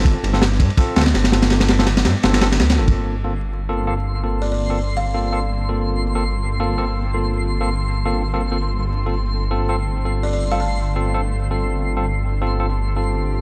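Bright, clean electric piano stabs ring out through a dub echo over a thick, menacing detuned saw bass at the very start of this nostalgic, atmospheric drum and bass cut, set at 165 BPM in G minor with a lightly swung jungle feel. A crunchy, saturated breakbeat kit sits up front with a punchy kick, high-tuned snare and dark ride cymbal, playing only until 3.0 seconds. The harmony moves from G9sus4 to Gm11 and later to F/G. A twinkling, sparkling granular texture with an octave-up shimmer arrives at 3.8 seconds. At 4.4 seconds a cloudy, blurred pad drifts in, sitting in the background, and a woody, buzzing kalimba plucks a short melody through a dub echo, returning briefly later on. The whole piece carries a dry, gritty hardware character dusted with vinyl crackle.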